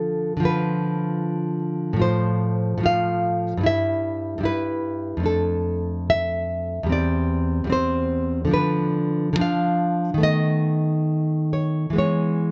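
A dark, fingerpicked nylon-string guitar sits up front in this melancholic, intimate romantic solo piece, drifting in rubato at roughly 66-77 BPM through a chain of chords from Bdim/D before settling through B7/D# onto E at 12.0 seconds, all captured with close, detailed microphones and light reverb in a brief portion cut from a longer work.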